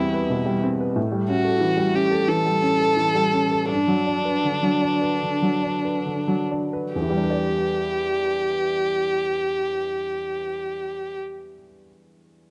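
Close, detailed microphones and light reverb give this short neoclassical passage an intimate, up-front sound, cut from a longer piece. It is fragile and longing in mood, set in E minor with the tuning at A4 = 439 Hz, and moves in a rubato 4/4 between 66 and 92 BPM, slowing over the first 6.9 seconds. A single bowed violin carries the melody between D4 and A4, its tone rich and focused with vibrato and a smooth top. An upright piano accompanies from E2 to D5, sounding worn and woody, slightly detuned yet natural. The harmony drifts from Cmaj7/E through A7 to Gmaj7, and a new section opens at 6.9 seconds on Em7. The violin stops at 11.2 seconds, leaving the piano alone until 12.5 seconds.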